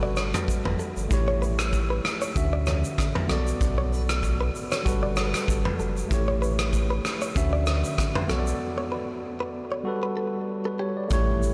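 A tine electric piano up front, a bright, compressed clean electric guitar riff drenched in lush chorus and tape echo, and a round sine sub bass open this breezy, romantic afrobeats excerpt at 96 BPM with a lightly swung sixteenth feel, joined at 0.2 seconds by a raw, punchy garage drum kit of kick, rim click, shaker and toms with gritty 12-bit sampler crunch, cycling through Gmaj9, A7, Dmaj9 and Bm7 in a dreamy mix soaked in huge ambient reverb before a break at 8.6 seconds and a faint electronic impact at 11.4 seconds.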